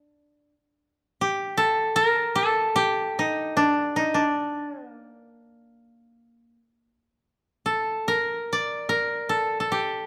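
Japanese traditional chamber music with an austere, calm mood: a solo acoustic koto played with fingerpicks sits up front with a woody, dry tone in a free, rubato 4/4, set in the moderate reverb of a recital hall throughout this 10.1-second fragment cut from a longer piece.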